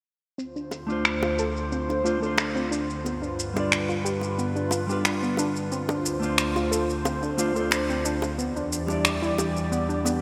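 An airy, breathy pad sits up front with slow-blooming, detuned chords under chorus, while a soft, round pluck traces arpeggios through a filter sweep and echoing digital delay in this smooth, warm sunset chillout excerpt at 90 BPM in D dorian. Overdriven electronic shaker and finger snaps drive the straight 4/4 groove with gated reverb, tight high-tuned bongos slip in very quietly at 0.7 seconds, and a dark, clean, fingered electric guitar joins at 0.9 seconds with its own delay. The bright 1980s-style digital production bathes the whole track in a lush hall reverb as the harmony moves from Dm7 to G7 and back, closing on Em7.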